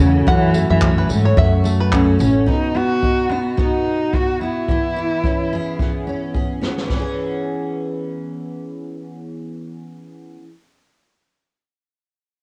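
Recorded at home onto cassette with light reverb and a touch of studio ambience, this carefree acoustic pop fragment has an easy-going, gently swung feel over chords moving from F#m7 to B to E6. A dark, woody bowed cello with vibrato carries the melody up front through analog delay until 6.3 seconds, while a full-bodied jumbo steel-string guitar, picked and double-tracked with audible finger squeak, accompanies until 10.5 seconds. A thumpy pizzicato upright bass on gut strings holds down the low end through the opening section, a bright, twangy fingerpicked banjo adds brief arpeggios, and a distant, roomy brush kit with boomy kick, high-tuned snare, crash cymbal, tambourine and handclaps plays a fill before stopping at 7.0 seconds.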